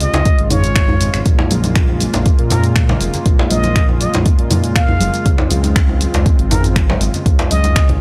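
Spiritual and driving, this short afro house excerpt in Bb minor at 120 BPM sets a bright, plunger-muted jazz trumpet with light vibrato, sampler grit and analog delay over a chorused, detuned analog pad and a dark, tube-saturated synth bass that both pump to the sidechain, while an up-front deep electronic kick, a deep house kit of finger snaps, hi-hat, shaker and toms, hard-handed vintage djembe and thick-skinned congas from 1.5 seconds drive a dry, gritty mix moving between Dbmaj7 and Bbm7.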